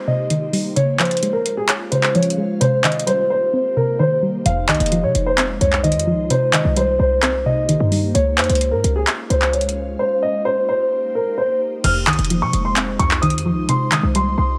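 A half-time trap groove in 4/4 carries this melancholic, brooding hip hop cut, taken from a longer piece. It opens as a break, with a booming analog drum machine of crash cymbal, handclaps, metallic hi-hats and rim clicks, re-recorded in a small room and placed up front, dropping out just before the short 808-style bass arrives at 4.5 seconds with a punchy, tight sine tone. A dark concert grand piano leads the melody throughout, mellow and intimate with audible action noise, deep low end, a boxy character and a digital delay. A soft, round pluck with a filtered, decaying attack and chorus supplies the accompaniment, falling away at 8.2 seconds and returning at 11.8 seconds for a brief closing section. Beneath it all, quietly, an ethereal, airy pad holds sustained chords with a slow attack, ensemble chorus, built-in reverb and phaser, as the harmony moves between Cm7, Db and Fm7 within light reverb and digital ambience.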